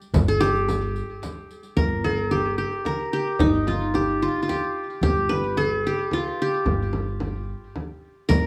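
Passionate and warm, this short excerpt from an Arabic maqam ensemble piece moves in a straight 3/4, led by an up-front qanun plucked with fingerpicks whose bright-edged triple strings carry a touch of tape echo. Beneath it, a woody, thumpy pizzicato upright bass on gut strings holds a dark low G, while a deep, large frame drum struck close with hard hands anchors the pulse. A riq adds its glittering jingles, played with soft hands in a small room, only until 1.7 seconds and again briefly at 8.3 seconds, all set in a light studio reverb.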